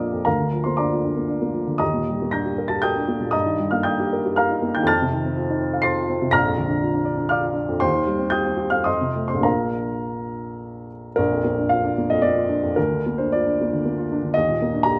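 A woody, up-front upright piano plays alone in this passionate, hopeful romantic character piece in Bb major and 3/4, moving with rubato between 97 and 125 BPM across a range from Bb1 to C7, its warm tone caught by close, detailed microphones in light reverb as chords such as Ebmaj7, F7 and Cm/Eb colour the opening phrase before a new section begins at 11.2 s.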